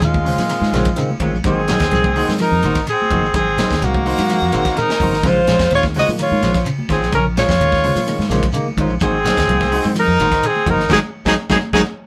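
A breathy, whispered alto saxophone carries the melody up front, its soft attack, vibrato and scooped notes giving an intimate edge to this funky, defiant afrobeat groove at 127 BPM in a straight 4/4. Beneath it a brilliant trumpet plays a second line with its own vibrato and scoops, while a round, foam-muted fingered bass sits dark and direct under chords moving between Bbm9 and Ab9. A tight funk kit with a high-tuned snare drives the pulse, joined by a grainy shekere in the background and very quiet, ringing congas that come in at 0.1 seconds. A dark, clean guitar picks arpeggios through a harmonic tremolo, a hollow-body guitar adds clean stabs from 0.3 seconds, and a very quiet tine electric piano fills in accompaniment. The band plays live in one room with light reverb, hitting a shared accent from 10.9 seconds and a drum fill at 11.8 seconds before this cut from a longer piece ends.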